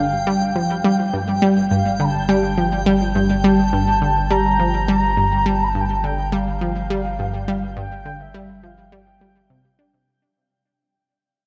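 A cut from a longer ambient piece opens with all four parts sounding together: a bright, detuned sawtooth pluck riff sits up front, colored by chorus and tape echo, while a deep, dark bass of square and sine tones holds a low G beneath it. Above them, a mellow wooden flute carries an airy melody with vibrato and a soft attack, set distant and trailed by its own tape echo. Alongside it, a twinkling granular texture with an octave-up shimmer and slow attack sustains a single G, bathed in its built-in reverb. At a straight 104 BPM in 4/4 and in G minor, the harmony rests on a G dominant seventh with its third omitted, giving the expansive, cosmic mood an open, unresolved quality. The whole passage floats in a vast cathedral reverb with a 5.1-second decay, and a fade-out begins at 3.9 seconds and runs to the end at 10.1 seconds.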